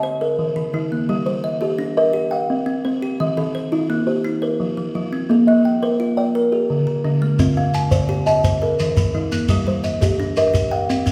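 Warm and hypnotic, this southern African traditional mbira-style interlocking cycle in 12/8 pairs a buzzing, woody kalimba with slapback echo and a second thumb-plucked kalimba on a solid board, their short arpeggios circling through chords such as Gm, Cm and Eb, before a grainy shekere joins at 7.4 s, the trio heard from further back in a reverberant recital hall.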